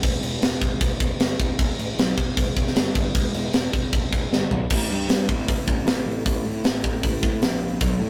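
Dark and epic, this heavy metal fragment, cut from a longer piece, moves in a straight 4/4 with a fuzzed, overdriven picked electric bass growling low and round beneath a tight metal drum kit whose bright cymbals, high-tuned snare and tight kick sit up front in an airy, polished big-room sound. A drum fill at 4.3 seconds leads into a new section at 4.7 seconds. The rough rehearsal-room recording carries tube saturation and little reverb, giving the bass a direct, amped grit.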